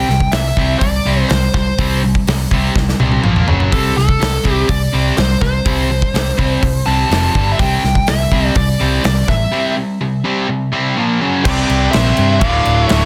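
A biting, overdriven lead guitar carries the melody through this menacing, driving hard rock piece at 124 BPM in straight 4/4. Beneath it, two picked rhythm guitars play a riff: one is bright and overdriven, while the other is distorted, compressed and scooped, sitting in the background. A growly, punchy picked electric bass and a big acoustic rock kit push the track forward. The kit sits up front, with a boomy kick, medium-tuned snare, hi-hat, toms and crash, and it breaks into a fill early on. The harmony cycles through C5, Bb5 and F#5 before landing on C and later D minor. A dark octave-fuzz lead guitar adds a second line from 11.4 seconds, and at 11.5 seconds a very quiet, double-tracked high-gain guitar joins the riff as a new section begins, all within a dense, heavily limited mix with light reverb and small room ambience, cut from a longer piece.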